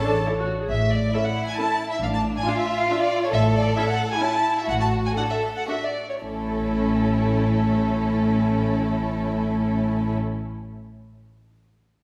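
Bowed strings open together in a graceful, cheerful excerpt from a quick classical-period orchestral movement in 3/4 and A major at 110-138 BPM, where a smooth, up-front first violin section with light vibrato carries the melody over an expressive, close second violin line, an even, distant viola accompaniment, a dark cello bass and a rich double bass section, the rubato playing slowing from 2.7 to 6.2 seconds within the wet reverberation of a church or concert hall.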